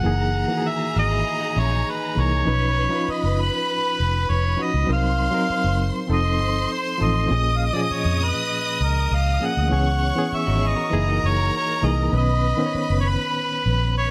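Silky and cinematic, this soul excerpt moves at an easy, straight pace in four, cut from a longer piece. A mellow harmonica carries the melody up front, its light vibrato and scooped notes giving it a vintage, jazz-style voice, while a lush bowed violin section sings a second line with rich, expressive vibrato. Underneath, a barky, reedy electric piano supplies the accompaniment, lightly overdriven and shimmering with fast tremolo through its built-in speakers, and a dark, round, foam-muted fingered bass sits up front with an amped, vintage tone. An electric guitar through a small old amp, slightly broken-up and picked, slips in from the background with a short riff at 1.0 seconds and again at 10.5 seconds, bathed in spring reverb. The harmony drifts through lush extended chords such as Gb13, Cm7b5, F7 and Bmaj9, and a generous studio reverb gives the whole ensemble a polished, spacious finish.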